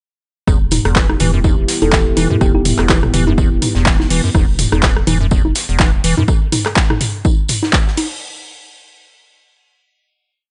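A punchy, tape-warm electronic kick drives this driving, hypnotic acid house piece in a four-on-the-floor pattern, joined by an up-front analog drum machine's claps, rim clicks, congas, toms and open hats, with a polished, airy acoustic kit of hi-hat, snare and tambourine looping an edited breakbeat in the background. A squelchy, resonant square-wave acid line with filter sweeps, overdrive and analog delay rides a thick, saturated sub bass and a moody, detuned sawtooth pad, all three pumping against the kick. A round, tine-like FM pluck slips in short answering phrases between 1.8 and 2.6 seconds, and the basses and pad drop out around 6.2 seconds, leaving the drums to carry on in a dry, gritty hardware sound.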